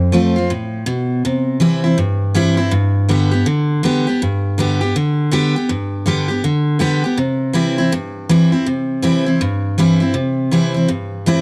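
Rowdy and retro, this short rock snippet features a lone picked steel-string acoustic guitar playing solo for its full 11.4 seconds with a swung eighth-note feel. The jumbo-bodied guitar sounds bright and full-bodied, sitting up front in a light reverb with audible finger squeak, as it moves through F, C and G before a brief new section arrives at 10.2 seconds.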